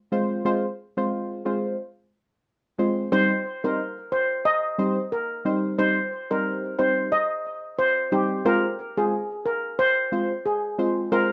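Dancehall at 90 BPM with a light sixteenth-note swing, hypnotic and sultry in mood, this cut from a longer piece opens on a deep, mellow chord stab with chorus, its soft sawtooth-and-sine tone evolving under a filter sweep with a fast attack that decays, moving from Fm to Cm. At 3.1 seconds a shimmering, metallic steel pan takes the melody, played with soft rubber sticks and sent through digital delay, sitting up front beside the stab until both stop at 11.3 seconds. The dark production is set in a moderate studio reverb.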